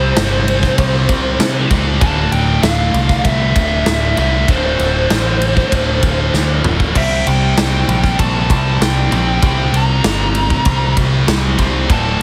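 Biting, overdriven lead guitar with analog delay carries the melody over a heavy, driving hard rock riff from two picked, high-gain guitars, one scooped and one bright and set in the background, and a growling, up-front picked bass, while a big, punchy acoustic drum kit in a natural room comes in at 0.2 s and plays a fill at 6.3 s, all within a short cut from a longer piece shifting between C5 and D5 chords under light reverb and a heavily compressed, radio-style sound.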